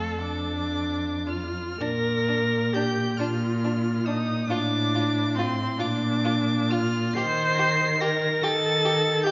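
Heard in a wet scoring-stage reverb with a 1.8-second decay and a top end that stops at 7.5 kHz, this short cut from a longer classical piece is a slow, tender romantic movement for string quartet in Bb major, swaying in 6/8 at roughly 36-49 dotted-quarter beats per minute with a free, rubato feel. The first violin carries the melody high above the group, its bowed tone rich, smooth and even with vibrato. The second violin sings a focused inner line beneath it. An intense viola fills in the accompaniment close to the listener, its airy bow giving a clear edge. The cello anchors the bass, with a soft attack, expressive portamento and a mellow glow. After a brief opening over F, the music moves at 1.8 seconds into a longer passage whose harmony settles through Bb and reaches Eb by 7.2 seconds.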